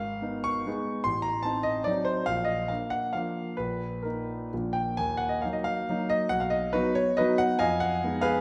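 Dotted rhythms drive this romantic triple-time dance in 3/4, played with a flexible rubato feel that gives it a proud, rustic character in this short passage cut from a longer piece. A solo concert grand carries everything, sounding intimate and up front with deep bass, long sustain and audible action noise, set in a wet recital hall reverb. The opening section moves through a half-diminished chord, a diminished seventh and a B-flat, before a new section at 5.0 seconds turns to E-flat minor and B major, closing on a half-diminished F chord at 7.6 seconds.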